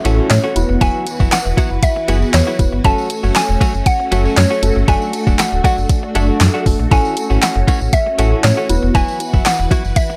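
A smooth, electronic R&B drum kit with a soft kick, fat snare, handclaps and hi-hat drives this upbeat, summery dance-pop excerpt at 118 BPM in straight 4/4, with a jingly tambourine and a deep, full sine sub bass with octave pumping up front beneath it. In E major, a woody, round FM mallet-like synth pluck with chorus carries the melody while a worn, slightly out-of-tune tine electric piano, lightly overdriven through a combo amp, and a silky vintage string machine in the background both pump with phaser over chords moving from A6 through Esus2, F#m and D. A clean, picked, direct-recorded electric guitar with subtle chorus plays a riff, a very quiet downlifter sounds until 2.8 seconds, and the dry, gritty hardware sound keeps the whole mix close.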